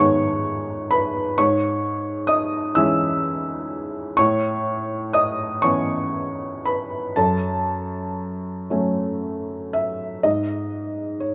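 A soft, mellow felt-muted upright piano plays alone and up front in this reflective, intimate fragment of a longer neoclassical minimalist piece, drifting in a rubato 6/8 through G#m, C#m/G#, Aadd9 and F#m before settling on a bare G#5 at 10.3 seconds, its notes spanning F#2 to E6 and carried by a moderate scoring-stage reverb.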